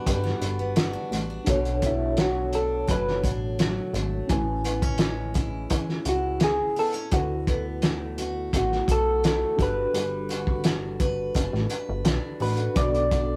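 A rough rehearsal-room recording with moderate reverb frames this laid-back, sunny indie pop and bedroom pop clip at 85 BPM in a straight 4/4, moving through Gmaj7, Bm7, Amaj7 and D6 chords. Muffled, cloth-damped drums with a fat snare and tight kick sit up front, joined by a punchy, plucky analog bass, while a bright picked steel-string acoustic guitar with a warbly pitch drift and a mellow tine electric piano heard through its built-in speakers fill out the accompaniment. Soft, round electric-piano-like synth keys with chorus carry the melody and take a solo from 1.5 s to the end at 13.4 s.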